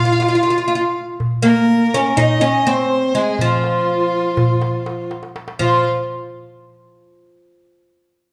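Set in a lush, reverberant large studio with the ensemble playing live together, this hypnotic, soulful Turkish makam fragment moves at 245 BPM in eighths through a straight 9/8 in F minor. A bright, woody fretless oud, plucked with a plectrum on double strings, sits up front carrying the melody, while a single bowed violin with a rich, focused vibrato shapes a second line above it. A crisp metal-shell darbuka, played with soft hands and heard close and dry, joins at 0.2 s and plays a fill from 5.1 s just before a new section begins at 5.6 s.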